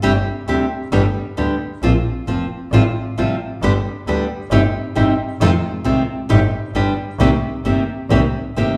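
A bright, fingerpicked nylon-string guitar with fresh strings sits up front in this short, playful and passionate tango fragment in C minor, moving at 133 BPM in 4/4 with a rubato feel through chords such as Gsus4, Bbsus2, Fm7 and a closing Cm7. A single bowed double bass supplies an earthy, distant low line with light vibrato; both players enter together at the start, and the guitar drops out just before the bass at the very end. The pair perform live in one room, and a large studio's wet reverb hangs around them.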